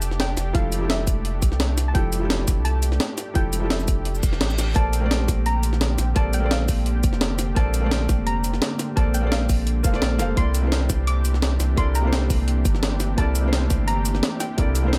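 Melancholic and dreamy, this short cut from a longer liquid drum and bass piece moves at 171 BPM in 4/4 with a light swing on the sixteenths, tuned slightly below standard pitch. A felt-muted upright piano carries the accompaniment, its soft, intimate tone revealing audible action noise and short sustain, touched with tape echo, while a lush, detuned sawtooth unison pad holds sustained chords with a slow attack, warbling chorus and sidechain pumping. High above, a soft, round pluck plays the melody, dark and set in the background, colored by subtle chorus, cassette tape character and digital delay. A deep sine sub bass sits up front with a fast attack, joined by a gritty, pitched-up breakbeat sampler-style kit of hi-hat, shaker and medium-tuned snare, plus a tight, layered electronic kick that enters at 0.5 seconds. An electronic reverse cymbal sounds at 4.2 seconds, leading into the move from Fmaj9 to Bbmaj9 at 4.8 seconds, with the harmony settling on C13 at 10.4 seconds, all in a dry, close-sounding mix.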